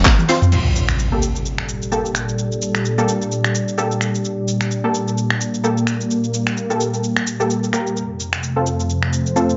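Bass house in G minor at 129 BPM with a swung sixteenth feel, this swaggering, bouncy excerpt opens on a drum fill from an up-front, tape-warm house kit with a cracking snare, handclaps, finger snaps, cabasa, hi-hat, toms and crash, before an electronic impact lands at 0.5 seconds. Punchy, detuned sawtooth orchestra-hit-like stabs with tape echo and ring modulation ride over an airy, evolving resonant pad whose sustained chords move from G minor add9 to F, both pumping against the sidechain. From 1.5 seconds a deep, moody ambient pad with a sub octave and wave-folded tones sits in the background, all within a lightly reverberant, dark-topped mix.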